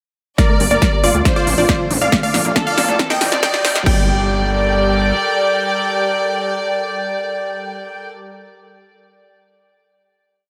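Lightly reverberant and high-passed, this emotional, driving uplifting trance piece in G minor at 138 BPM opens at 0.4 seconds with a build and drum fill: a punchy, up-front four-on-the-floor electronic kick and an overdriven big-room dance kit with crisp pumping hats, snare and crash drive it, a gritty, saturated sawtooth synth bass joins at 0.6 seconds, galloping in sixteenths, a background unison pluck arpeggio moves through a filter sweep, and from 2.0 seconds a very quiet riser adds transition effects, while a detuned supersaw stab with dub echo plays a repeating riff in thirds and sixths, faintly doubled by a round analog pluck, above a soft, floating bowed violin section with tape echo and a thick, chorused unison pad that enters at 1.0 seconds, before everything settles onto a sustained final chord at 3.9 seconds.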